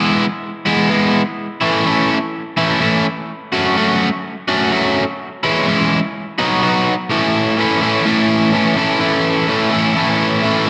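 A straight, steady 4/4 pulse drives this short rock fragment, cut from a longer piece, with a carefree, jangly mood. A single crunchy, overdriven electric guitar carries the whole passage alone from start to finish. It is picked, bright and double-tracked, and it sits up front in the mix. Spring reverb and analog delay color the guitar as it moves through E, A, F#m, C#m and B, and the music shifts into a new section at 7.1 seconds on an A chord. A wet studio reverb and a dark, warm production wrap around the guitar's bite.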